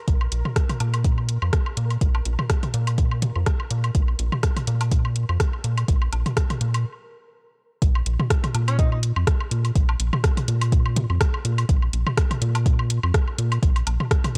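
A steady groove with a light swing on the sixteenths drives this clinical, quirky slice of minimal techno, cut from a longer piece. An up-front electronic kick drum, soft and tape-warm as if re-recorded in a large room, anchors the pulse, while a booming analog drum machine adds dry, metallic hi-hats and rim clicks, and electronic woodblock and toms ring through an analog delay. Underneath, a rubbery square-wave bass sits forward in the mix, hollow and nasal with a resonant filter pluck and a moving notch, pumping with sidechain compression. For the opening 6.9 seconds, a pulsing, tempo-synced texture of detuned triangle voices hovers in the background, softened by chorus and its own reverb and also pumping with sidechain compression. After a brief stop, the drop arrives at 7.8 seconds, and a clear, distant alto saxophone offers a fleeting jazz-style phrase with vibrato and delay at 8.7 seconds, all set in a digital ambience with a gritty hardware character.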